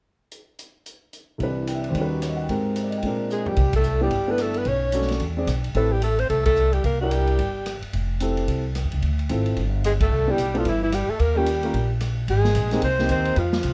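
A dark, lightly reverberant production frames this short cut from a longer small-group swing and bop piece in C major, moving at a brisk 221 BPM in 4/4 with a swung eighth-note feel. A roomy, distant drum kit opens the passage, its boomy kick and medium-tuned snare joined by hi-hat, ride cymbal, rim click and toms. A natural-sounding grand piano enters up front at 1.4 seconds, accompanying over chords such as Cmaj7, Eb7alt and Abmaj9. Alongside a drum fill at 3.3 seconds, a clear, close-miked alto saxophone takes the melody with vibrato and a soft attack, while a bright tenor saxophone plays a second line, and from 3.6 seconds a woody pizzicato upright bass with steel strings sits up front beneath them. Band accents punctuate the groove, the saxophones pause and return at 9.9 seconds, and the mood stays warm and swinging as the harmony turns through Bm9, E7b13 and Abmaj7.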